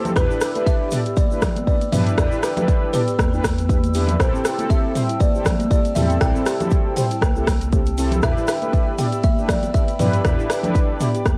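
A home cassette recording with light studio reverb carries this hypnotic afro house excerpt in E minor at 119 BPM, swung on the sixteenths and moving between Em7 and C6. A punchy electronic kick sits up front over a round sine sub bass, while a house kit with metallic hats, rim click and toms, distant high-tuned congas and a grainy egg shaker fill out the groove, all tied together by sidechain pumping on the bass, pad, brass and marimba. A buzzing, thumb-plucked kalimba carries the tape-echoed melody, joined by soft-mallet marimba arpeggios, detuned sawtooth synth brass stabs with chorus and vibrato, and a moody, wave-folded analog pad sustained in the background.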